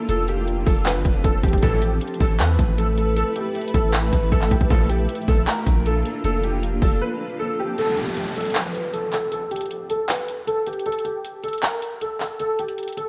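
A dreamy, reverb-soaked mix flecked with vinyl crackle carries this menacing, hard-hitting half-time trap excerpt at 156 BPM, where a dark, vintage grand piano melody and a hard-clipped kick with bright hats sit up front over a deep, decaying sine 808 and a cloudy, blurred granular pad, while very quiet fat sawtooth polysynth stabs flash at 1.6 and 4.7 seconds before the bass drops away at 7.0 seconds and an electronic downlifter sweeps in at 7.8 seconds as the chords fall silent.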